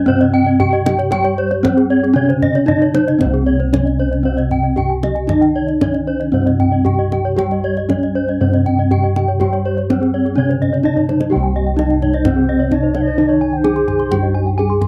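A dry, close studio sound from the 1970s, in a small booth, frames this hypnotic, brilliant Balinese gamelan passage, cut from a longer piece in a straight four. Up front, a bronze metallophone rings out the melody with a slapback echo, while a lower metallophone carries the accompaniment and two higher ones spin shimmering arpeggios, one airy in the background and one with its own echo; round, beating bossed gongs hold the bass. A deep, saturated kendang drives beneath, and after its fill at 11.0 s a distant bamboo bansuri adds a tongued second line with vibrato from 12.1 s.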